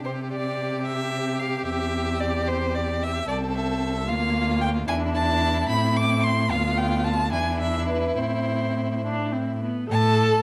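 Quick classical-period string quartet movement in a lively, cheerful 6/8 at 68-76 BPM on dotted quarters with a rubato feel, opening in C major and turning to A minor from 3.3 s. Throughout, an up-front first violin sings an expressive melody with vibrato and portamento above a smooth, even second violin, a soft-attacked, distant viola accompaniment that also slides between notes, and a focused, close cello bass at the front, all four bowed with a rich vibrato tone and captured by close, detailed microphones in a moderate recital hall reverb.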